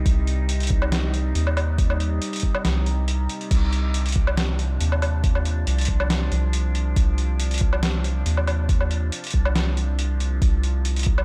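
Entering at 0.1 s alongside a gritty, pitched-down trip hop sampler-style kit of snare, hi-hat, crash and woodblock, an overdriven, knocking electronic kick drives this heavy, cavernous deep dubstep excerpt at 139 BPM with a swung half-time feel in C minor, over a round, soft dub sub bass held up front and a detuned drone of sustained chords with moving overtones, chorus and reverb, set in a digital ambience.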